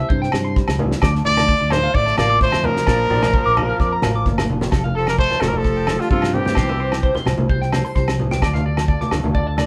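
A fingerpicked acoustic archtop guitar with audible finger squeak sits in the background beneath a twangy, slightly broken-up electric guitar playing phaser-tinged arpeggios and a round, punchy fingered bass, as a dry, fat-snared 70s drum kit, close ringing agogo bells and low-tuned vintage congas join to build a sunny 130 BPM highlife groove in F major, over which a clear, forceful trumpet with vibrato carries the jazz-style melody up front from 1.3 to 7.3 seconds, shadowed by a very quiet, raspy tenor saxophone line, with a drum fill at 4.3 seconds, the band heard live in a moderately reverberant studio room in this short excerpt from a longer piece.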